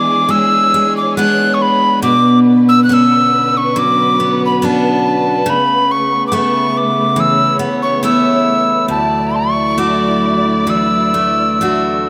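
A tin whistle with an airy chiff and vibrato carries a wistful, pastoral Celtic slow air over up-front, fresh-stringed picked steel-string acoustic guitar and a smooth, bowed studio string section holding soft sustained chords, all flowing in a rubato 4/4 through E7, Bmadd9, Aadd9/C# and Dadd9 in a rough home demo mix with light reverb, cut from a longer piece.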